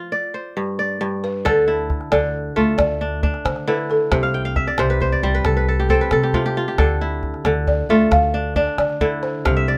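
West African traditional music in a flowing 12/8, this excerpt opens with a crisp, ringing fingerpicked kora playing arpeggios up front before a buzzing balafon, struck with soft rubber mallets, enters with the melody at 1.2 seconds. At 1.5 seconds a thumpy pizzicato upright bass on gut strings and a deep, close calabash join as the harmony moves between D minor and C. The kora adds a fill from 4.2 seconds, all under a light reverb.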